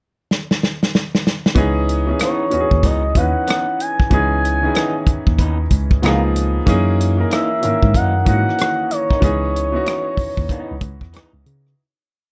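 A dark, softly lit production with light reverb frames this short, sultry neo-soul piece at 94 BPM in C# dorian, its sixteenths swung for a smooth, unhurried lean. The acoustic drum kit, roomy yet tight and with a rolled-off top, opens with a fill from 0.3 seconds before settling into a laid-back beat of kick, snare, rim click and hi-hat dotted with ghost notes. At 1.5 seconds a clear, intimate baby grand, its action noise audible, begins playing rootless rhythmic chords with grace notes over a C#m9 that moves to C#13 and F#13 before returning. A moment later, at 1.6 seconds, a worn, slightly out-of-tune tine electric piano takes the bass role through a combo amp, laying down a relaxed line with muted ghost notes. From 2.2 seconds a sawtooth lead with a soft attack, chorus, vibrato and gliding portamento sings short call-like motifs in its upper register, and a lo-fi, slightly broken-up guitar through a small old amp, treated with phaser, adds sparse clipped chords in the background. 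The whole piece fades out from 9.2 seconds to its close at 11.8.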